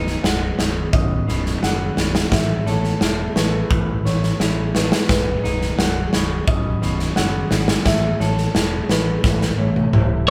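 Post-rock with a euphoric, hopeful lift, this short excerpt moves in a straight 4/4 as the harmony sways between B and Asus2. A big rock drum kit sits up front with a punchy kick, a medium-tuned snare and toms ringing in a large room, and it closes with a fill from 9.2 seconds. Beneath it, a growling fingered electric bass carries the low end, overdriven and amped. An electric guitar through a small old amp picks dark, slightly broken-up arpeggios, while a felt-muted upright piano adds its own mellow, intimate arpeggios further back in the mix. A very quiet, glassy FM pad holds ethereal sustained chords with a slow attack and ensemble chorus, and the whole band sounds as though it is playing live together in one room with moderate reverb.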